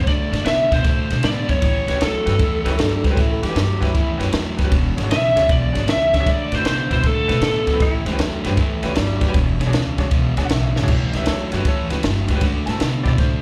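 Electric blues shuffle at 156 BPM in A mixolydian, soulful and gritty, caught live through a club PA with light club reverb. An up-front overdriven lead guitar carries the melody over a dark hollow-body riff guitar, a woody, thumpy upright bass and a punchy cocktail kit with a high-tuned snare and dark cymbals. A slightly detuned upright piano with audible action noise joins at 1.9 seconds and later adds a fill, a distant subtoned tenor saxophone with scooped notes slips in a second line at 2.7 seconds, and the lead guitar drops out at 7.8 seconds as the sax returns.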